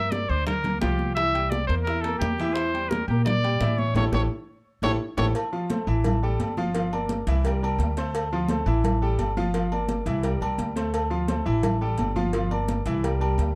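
In a dark, small-room mix, this passionate, driving salsa excerpt at 172 BPM features a punchy trumpet melody with scooped notes and plate reverb that plays until 5.3 s, over brilliant baby grand piano, a woody pizzicato upright bass up front, tight hard-hand bongos and cowbell, damped high-tuned congas, and ringing metal-shell timbales with agogo bells, while a drum fill and band accent from 4.0 to 5.4 s lead into a passage built on Fmaj7, Gm7 and Dm7.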